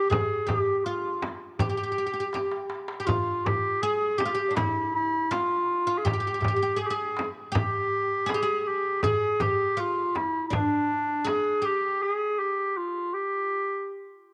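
The clarinet leads this stately Turkish makam ensemble piece in G makam hicaz at 81 BPM, its classical-style solo line sounding distant and roomy yet up front, with a moderate plate reverb around it. A bright, woody oud with double strings plays a second line in the same register until 12.0 s, while a crisp metal-shell darbuka and a small, close, dry frame drum keep a straight 4/4 pulse, marked by a drum fill at 2.3 s. The percussion drops away by 11.5 s and the oud at 12.0 s, leaving the clarinet alone until the cut at 14.2 s in this fragment of a longer piece.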